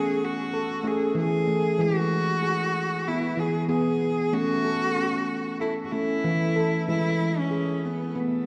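A ringing stainless-steel handpan sounds through this gentle, meditative world piece, its bright, mid-forward arpeggios struck with sharp finger strokes and placed up front. Alongside it from 0.0 to 8.5 s, a single bowed cello carries the melody with a rich, focused tone, expressive vibrato and a smooth top. Both instruments are bathed in shimmer reverb and delay, and the harmony alternates between A and E chords over a lightly swung 4/4 pulse. A wet concert hall reverb blends with a small room ambience, giving the dark, warm production a spacious glow. This short passage is cut from a longer piece and stays in one calm, unhurried section throughout.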